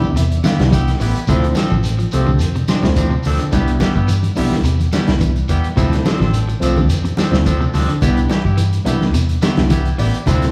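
A dark, round hollow-body electric bass underpins this defiant, intense afrobeat excerpt at 107 BPM, set over a muffled vintage drum kit with a punchy kick, soft-handed low-tuned congas, a grainy, distant shekere, a picked electric guitar playing arpeggios in the background, a twangy, slightly broken-up guitar adding stabs through spring reverb, and a worn, slightly out-of-tune tine electric piano with light overdrive that plays fills at the start and again at 9.4 seconds, as the harmony moves between Cmaj7 and Dm7 with the band playing live in a large studio room.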